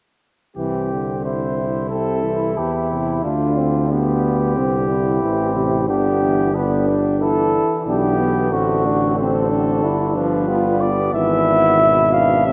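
A dark, punchy trumpet carries the melody up front in this triumphant, stately classical brass quintet at 91 BPM in C major, with a warm tuba bass of soft attack, a warm flugelhorn second line in the background, a very quiet, brilliant trombone, and a clear French horn joining at 1.9 s, all washed in the long, echoing reverb of a vast cathedral.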